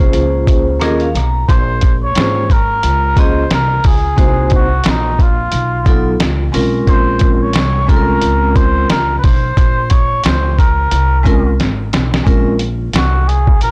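This jazz-hop excerpt sits at a relaxed 89 BPM in Bb minor, its swung sixteenths giving a smoky, cool feel. A cup-muted trumpet carries the melody throughout, veiled and mellow with a soft attack and gentle vibrato, sounding distant and roomy before taking a short solo at 12.3 seconds. Beneath it, a vibraphone struck with medium hard mallets rings dark and smooth with a slow motor vibrato, adding a brief fill early on and dropping out at 12.5 seconds. The pizzicato upright bass is woody and warm, its steel strings colored by transformer saturation, while a compressed, sampler-style drum kit with a thumpy kick, medium-tuned snare, rim click and hi-hat sits up front, muffled yet roomy, and plays a fill just before the solo. The harmony moves from Bbm9 through Cm7b5 and B7#11 back to Bbm9, and the whole mix is dry, blown-out and overdriven.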